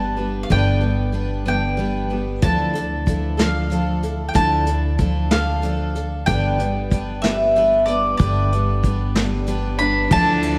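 The bright, round mandolin carries the melody in this haunting, reflective acoustic folk piece, its double strings ringing high over a slow, straight 6/8 pulse. Beneath it, a picked twelve-string acoustic guitar sits up front with a full-bodied, shimmering, octave-doubled sound, a little finger squeak audible as the harmony moves from G to Dmadd9 and back to G. A woody, thumpy upright bass plucks low notes from the start, and a vintage brush drum kit joins at 2.4 seconds with dark cymbals, a tight kick and a rolled-off top. Just before the clip ends, a single warm fiddle enters at 9.8 seconds, adding a reedy, gut-string tone with a smooth-topped bowed note. A moderate concert hall reverb gives the whole an airy sense of space, and the passage is cut from a longer piece.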